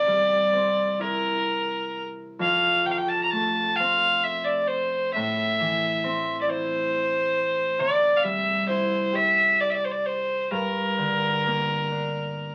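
The rhythm moves in a 6/8 that stretches and bends freely, its beats uneven and unhurried in the manner of a Celtic slow air. This haunting, mournful folk piece is heard as a fragment cut from a longer performance, running through a single section of about 12.5 seconds. A single bowed fiddle carries the melody from the first moment, its clear, earthy tone touched with light vibrato and set up front, though it carries a faintly distant quality. Beneath it, a concert harp plays a fingerpicked accompaniment in a lower register, bright and ringing but mixed more quietly than the fiddle. The harmony passes from Cadd9 through F, Am and C before settling on Gm. A moderate club-sized reverb surrounds both instruments, and the whole sound has the character of a very old 78 rpm record, complete with vinyl crackle.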